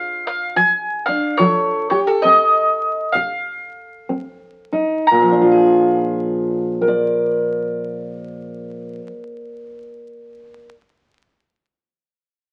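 A mandolin and a fingerpicked steel-string acoustic guitar open together in this gritty, rollicking acoustic country blues in Bb mixolydian, swung and easing down from around 75 toward 57 BPM over the first 5.1 seconds as the chords move from Bb7 to F7 and back. The mandolin carries the melody up front with a mellow, woody tone from its doubled strings, while the dark-toned guitar accompanies close by, finger squeaks audible, and plays on alone after the mandolin stops at 8.9 seconds. Moderate studio reverb and the crackle of a very old 78 rpm record color this short fragment cut from a longer piece.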